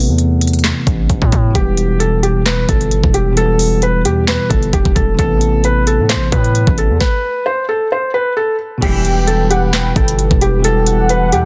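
A dense, heavily limited modern master with little reverb gives this dark, hard-hitting trap cut a close, in-your-face sound, taken from a longer hip hop piece in E minor at 132 BPM with a half-time feel. An overdriven electronic drum kit, re-recorded in a small room and placed up front, pairs a knocking kick and sharp snare with crisp hats, handclaps and crash. Beneath it sits a heavy, aggressive, saturated 808-style bass with a noise layer, while a bell-like, clean tine electric piano supplies accompaniment over Amadd9 and Em chords. After an opening break, a soft, felt-muted upright piano carries the mellow, intimate melody from 1.6 seconds, and a stop arrives at 7.0 seconds. At 8.8 seconds the second section brings a velvety synth lead with chorus, tape echo, vibrato and portamento as a second line, a deep, moody analog pad with chorus in the background, and a brief, distant stab from a lush bowed string section.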